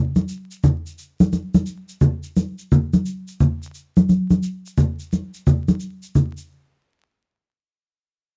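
A dry, close 1970s-style studio sound with vinyl crackle and a touch of moderate room reverb frames this mellow, cool hip hop excerpt, where bright, saturated congas and tube shaker played with soft hands sit up front with a compressed, swung 16th-note feel from 0.2 to 6.5 seconds.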